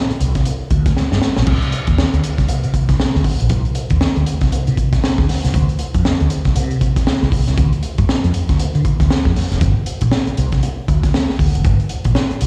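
Sly and cool, this short funk passage, cut from a longer piece, rides a relaxed swing on the sixteenth notes. A mellow fretless electric bass carries the low end from 0.1 seconds, its dark, round, amped tone treated with an ensemble chorus. Alongside it, a crunchy breakbeat drum kit with a high-tuned snare, tight kick, hi-hat and dark crash cymbals sits up front, sounding saturated and gritty with a rolled-off top. A drum fill between 1.0 and 1.5 seconds leads into the main groove, which later gives way to a new section at 9.6 seconds. The whole performance comes across as a live gig heard through the venue's PA, with a light recital hall reverb around it.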